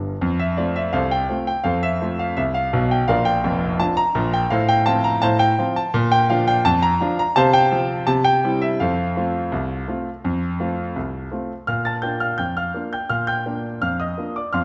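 A clear, natural grand piano plays alone in this cheerful, lively ragtime fragment, opening with a fill before settling into a straight two-beat feel. Its short-sustained notes sit up front and span from deep bass to high treble, with a moderate stage-like reverb adding space. The harmony moves mostly between tonic and subdominant chords, with a brief turn to the dominant, and a new section begins at 11.7 s just before the fragment is cut off.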